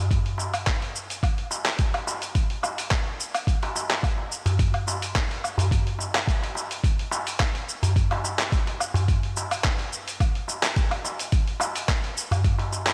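A gritty, overdriven sampler-style kit of handclaps, hi-hat, shaker and woodblock opens this mystical, hypnotic downtempo excerpt at 107 BPM in 4/4 alongside a thumpy, compressed electronic kick, both up front with studio reverb and a light 16th-note swing. A deep, clay-shelled darbuka played with hard hands enters at 0.4 s, its acoustic skin tone sitting in a large room. The groove moves into a new section at 6.8 s and carries on until the cut at 12.9 s.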